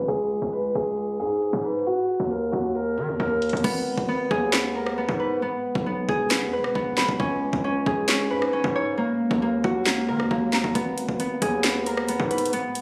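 Heard through a phone in the room, this compressed, low-passed trap and hip hop fragment sits in a club-like reverb, brooding and menacing at 135 BPM in a half-time 4/4 feel in G# minor. A dark, boxy grand piano with long sustain carries the melody under a filter sweep until 3.6 seconds, when a ringing, fingerpicked concert harp takes over as accompaniment. Throughout, a saturated, distorted 808-style bass with a noise layer and fast, decaying attack runs alongside an electronic kit of knocking kick, sharp snare, claps, rim clicks and crash, whose metallic hi-hats drop out from 3.6 to 10.8 seconds.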